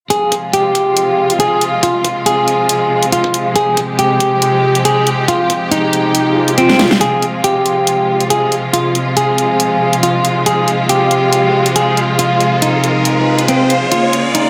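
This excerpt of heavy wobble dubstep opens with a clean, fingered electric guitar melody in F minor, sitting up front with spring reverb and dub echo, over lush bowed strings whose vibrato-laden sustained chords pump against a sidechain. The mood is menacing and chaotic, moving at 139 BPM in a half-time 4/4 feel with a slight swing on the sixteenths. A layered, produced drum kit drives the hi-hat and a huge, up-front snare, while a knocking electronic kick, high-pass filtered and kept in the background, plays only until 6.8 seconds. A swell arrives at 6.3 seconds and a drum fill leads into a build-up, where a background riser climbs through to the end as the harmony shifts from Fm to Db6. The whole mix sits in a lush digital hall ambience.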